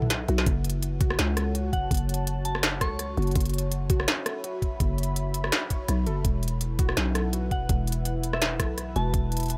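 A digital ambience frames this spacious, tense half-time drum and bass excerpt in F# minor at 166 BPM, where an up-front industrial kit of clanging snare, crisp hats, rim clicks and toms opens with a fill before a gritty, pitched-down electronic kick lands with the drop at 0.5 seconds. A growling, buzzy 808-style bass sits up front beneath a deep, detuned analog pad that pumps against the sidechain through its chorus, while a lo-fi, warbling pluck plays dusty arpeggios in the background with chorus and digital delay. A soft, pure FM bell carries the melody in brief phrases from 1.7 and 7.5 seconds, as the harmony moves from F#m to E5 at 6.2 seconds.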